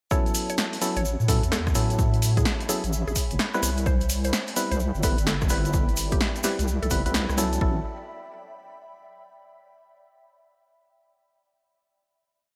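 A deep, wobbling bass sits up front from 1.0 s, playing a skipping, syncopated line under a two-step kick in this sunny, bouncy UK garage piece at 128 BPM in A major, swung on the sixteenths. Hollow, organ-like stabs with chorus, tape colour and digital delay play syncopated chords, while a punchy analog drum machine adds skipping hats, rim clicks and a snare with gated reverb, and a grainy, vintage tube shaker plays hand-played sixteenths. In the background, a woody, mallet-like pluck repeats a riff and an ethereal pad with sidechain pumping holds chords moving from A69 to Cmaj7, before a final A69 chord arrives at 7.6 s in a bright 1980s-style digital mix.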